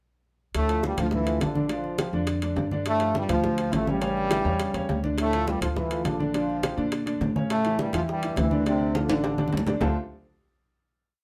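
A brilliant, tight trombone section leads this short, driving salsa piece, close-miked and up front with light vibrato as it states hook-like motifs partly doubled in octaves over a minor-key progression. A growly, woody upright bass plays a tumbao that anticipates the chords, while a clear upright piano joins at 0.7 seconds with an open montuno in octaves. Ringing metal-shell timbales with bell, damped low-tuned congas with slaps and open strokes sitting in the background, and very quiet high-tuned bongos in steady eighths with hand bell drive the passionate groove under moderate studio reverb, with a drum fill at 8.9 seconds leading into a final chord.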